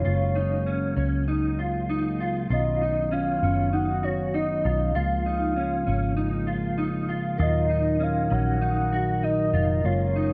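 A floating, ethereal dream pop passage at 98 BPM opens with a full, octave-layered synth lead singing a high melody through chorus, tremolo, vibrato and tape echo, joined from the start by a flute-like tonewheel organ holding soft chords through a slow rotary speaker, a dark, clean, fingered electric guitar tracing compressed arpeggios with ensemble chorus and tape echo, and a foam-muted, round picked electric bass, all in light reverb as the harmony drifts through F#add9, Badd9, C#6 and D#m.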